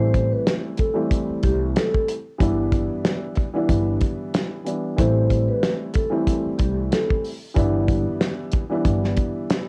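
Dark and moody, this short boom-bap hip-hop cut at 93 BPM in A minor swings gently over Am7 and G6 as a soft-mallet vibraphone with slow motor vibrato rings out a metallic melody until 7.2 seconds, a boxy concert grand with audible action noise and deep bass sits up front, a woody, growly pizzicato upright bass holds the low end, and a small-room soul kit with a fat snare, tight kick, hi-hat and rolled-off top keeps time, while the filtered vibraphone and piano carry a tape-worn grain in a dry home cassette recording.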